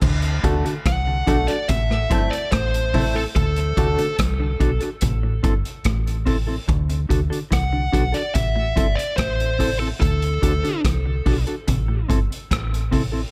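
A distorted, high-gain lead guitar carries the melody through this heavy, spacious dub reggae excerpt, its picked lines soaked in dub echo from 0.9 to 10.8 seconds. Beneath it sits a round, foam-muted fingered electric bass, dark and punchy, alongside a vintage acoustic drum kit placed up front, with a punchy kick, rim clicks, hi-hat and dark crash cymbals in a pumping small room with a rolled-off top. At a steady 72 BPM in straight 4/4, the harmony alternates between D and A minor. A very quiet clean electric guitar plays low fingered arpeggios, while a mellow electric guitar adds echoed accompaniment higher up. A brilliant, woody upright piano, worn and slightly detuned with audible action noise, drops echoing stabs in the opening seconds, and hard-handed, thin-skinned congas play softly until 3.6 seconds. The whole arrangement sits in a small-room ambience.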